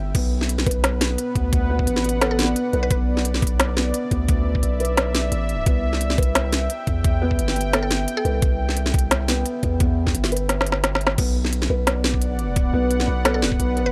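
A dry, gritty hardware recording of tense, heavy half-time drum and bass at 174 BPM in B phrygian, cut from a longer piece and sitting in a drop throughout, moving from Bm to C and back. A dark, detuned analog pad with chorus and sidechain pumping holds sustained chords over a deep, sine-toned 808-style bass placed up front, while a felt-muted upright piano plays soft, boxy arpeggios coloured by 12-bit sampler grit and tape echo. A compressed, pitched-down kick and an overdriven electronic kit with a woody snare and crisp hats drive the groove, with a fill from 10.5 s to 11.2 s, and a round, bright FM mallet pluck with chorus and tape echo surfaces in brief phrases in the background at 2.2 s, 7.7 s and 13.3 s.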